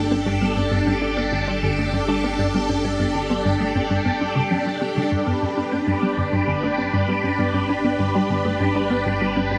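Cosmic and expansive, this short cut from a longer piece of ambient, sequencer-driven space music sits in a straight four-four pulse, bathed in a huge, wet reverb with an 8.0-second tail. Up front, a swirling, vintage string machine holds sustained chords through ensemble chorus and phaser, while a juicy, squelchy blip pluck drives a resonant riff with chorus and analog delay. In the background, a round, tine-like thumb-piano-style pluck plays arpeggios under a filter sweep with chorus and delay, and a fat, saturated analog bass holds a low G.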